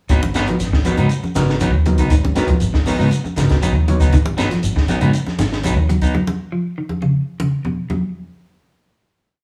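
The compact cocktail drum kit sits up front in this short, hypnotic and intense afrobeat piece, its punchy kick, high-tuned snare and hi-hat carrying an afro kit groove with a dark, rolled-off top at 119 BPM in a straight 4/4. Beneath it, a fingered electric bass plays a round, syncopated riff over a single G#m7 chord in G# dorian, while ringing, medium-tuned congas struck with hard hands sit close and dry in the background, and a grainy, mellow shekere adds a gourd-shaker texture. A clean, dark electric guitar repeats a fingered arpeggio ostinato in its low register with a warbly pitch drift, lasting until about 8.1 seconds. A second, twangy electric guitar at the edge of break-up adds funk-strummed stabs in upper chord shapes. From 0.4 to 4.1 seconds, a barky, gritty overdriven tine electric piano through a combo amp punctuates the groove with syncopated rootless chord stabs and a medium tremolo. 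The band plays live in one small stone room, whose moderate reverb gives the whole groove a close, roomy feel.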